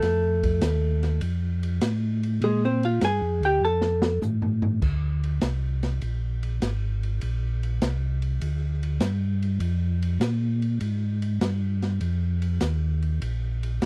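A dry, close 1970s-style studio sound frames this soulful, swinging soul jazz organ trio, where an up-front, clean hollow-body electric guitar plays a picked, compressed solo until 4.2 seconds, a mellow, round tonewheel organ carries the bass line through chorus vibrato and a slow rotary speaker, and an acoustic drum kit with dark cymbals, a medium-tuned snare and a punchy kick adds a fill from 3.6 seconds before the music moves into a new section at 4.8 seconds.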